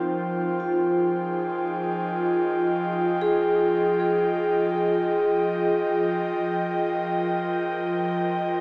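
In free time, this serene, spacious ambient passage in F minor rests on an airy, breathy pad with chorus, its detuned sawtooth and triangle layers holding sustained chords up front as the harmony moves from Fm7 to Eb/F at 6.3 seconds. A vibraphone with medium hard mallets plays dark, metallic arpeggios through tape echo, with a medium motor vibrato, until 6.4 seconds, while a very quiet, wind-like tuned noise texture enters at 4.8 seconds. A wet cathedral reverb sets the piece in a vast, echoing space, and this short passage is cut from a longer work.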